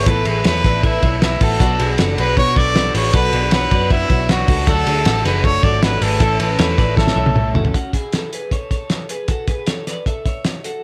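Jangly indie pop with a breezy, youthful mood, heard as a short cut from a longer piece over chords moving from Asus2 to Bm, A and Dadd9. A clear, roomy trumpet carries the melody up front in a classical style, while a fingerpicked twelve-string acoustic guitar adds a shimmering, octave-doubled layer very quietly beneath it. A woody, slightly detuned upright piano sits in the background, and a bright, twangy twelve-string electric guitar plays arpeggios through spring reverb. A foam-muted vintage electric bass gives a round, dark low end, and a cloth-damped drum kit sounds thuddy and gritty, with a fat snare, tight kick and dark cymbals pushed up front. A drum fill at 7.0 seconds leads into a new section, where only the electric guitar and drums carry on until the close at 10.8 seconds, all set in a small room ambience.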